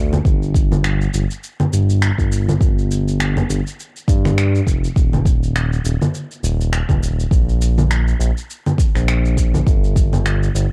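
A dry, close home recording captured on cassette gives this short cut from a longer piece of organic downtempo a hazy, lo-fi intimacy. A smooth synth bass opens at 0.0 s and carries the whole passage, its mellow, nasal tone blending sawtooth, square and triangle waves with a fast attack, sustained notes and a gentle vibrato, sitting up front and pumping under sidechain compression. Electronic congas, shaker and finger snaps follow at 0.1 s, overdriven and run through cassette tape, sounding as though re-recorded in a small room. A deep electronic kick drum joins at 0.2 s with the same overdrive and tape grit and drops out shortly before the end, leaving the bass and hand percussion to close. The lightly swung sixteenth-note feel and low, rounded bass give the piece a mystical, meditative mood.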